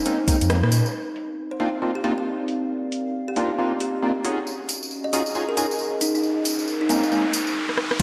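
Swung two-step garage drums at 136 BPM in 4/4 drive this moody, soulful excerpt in C phrygian: an overdriven garage kit with metallic hats, rim click and crash plays throughout, a bright, jingly tambourine drops out after 0.9 s and returns at 4.5 s, and a knocking, up-front electronic kick lands with a deep, rumbling detuned saw bass in brief hits near the start and at the end. Over Bbm11, Cm11 and Ebm11 chords, a woody, ringing kalimba carries the melody through diffuse delay while hollow, ring-modulated organ stabs with ensemble chorus punctuate and a warbling, nostalgic lo-fi pad pumps softly in the background. An electronic riser builds from 5.7 s into a drum fill, all bathed in a dreamy, lush hall reverb.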